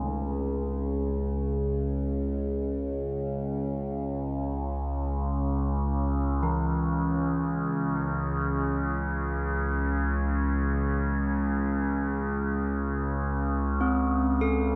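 In free time with a floating, unmetred pulse, this dark ambient drone excerpt unfolds in C# harmonic minor, tuned slightly low to A4 = 438 Hz, with a desolate, ominous mood. An overtone-sweeping drone sits up front from the first moment, spanning C#2 to C#3 with a nasal, sawtooth-edged core softened by sine tones, its resonant overtones shifting over a slow attack and long release, thickened by chorus and its own built-in reverb. At 6.4 seconds a gamelan-type bronze metallophone enters, playing arpeggios between E3 and A4 at a lower level than the drone, its metallic, ringing strikes trailed by delay. The whole recording sits in a vast, echoing space, with a wet cathedral reverb that lets each sound hang for seconds. Cut from a longer piece, it holds one continuous section through to 14.8 seconds.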